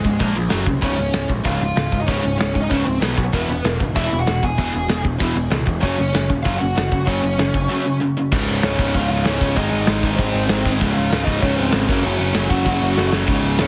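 The recording has a heavily compressed, radio-ready sound with light reverb, and this short cut from a longer punk rock piece charges along at 193 BPM in a straight 4/4 with a rebellious, upbeat mood. Up front, a loose indie drum kit plays kick, snare, hi-hat and crash in a pumping studio room, its dark cymbals and rolled-off top giving the beat a punchy but rounded feel, with a drum fill at 13.0 seconds. Behind it, an overdriven electric guitar with a bright edge and an overdriven semi-hollow guitar with a hollow-body warmth both play the riff in the background, while an overdriven picked bass, direct and amped with a growly bite, enters at 0.1 seconds. Over the top, a smooth overdriven lead guitar with a dark tone carries the melody through tape echo. The chords move through Bb5, Gb5, Db, Cb5 and E before the second section at 8.3 seconds cycles through Db, Ab and Gb5.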